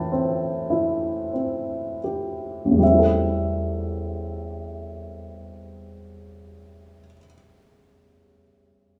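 A dark, woody upright piano plays alone and up front from 0.0 to 9.0 seconds in this melancholic, reflective classical piece in A minor, cut from a longer work and ranging from A1 to A5, opening on an A minor seventh chord. The lyrical solo unfolds in a slow, rubato 3/4 between 36 and 54 BPM, slowing down through its opening until 2.8 seconds, where a new section begins. A wet recital hall reverb lends the mellow tone the resonance of a church or concert hall.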